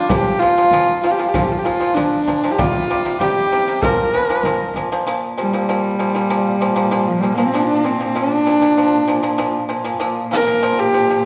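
Mongolian folk with a galloping, proud mood, this short cut from a longer piece places a rich, nasal horsehead fiddle melody with portamento and husky, airy bowing up front over dry, percussive fingerpicked pipa arpeggios, while a deep frame drum struck with hard hands plays until 4.9 seconds and a dark, woody cello drone with vibrato enters at 5.1 seconds, heard in the reverberant space of a recital hall.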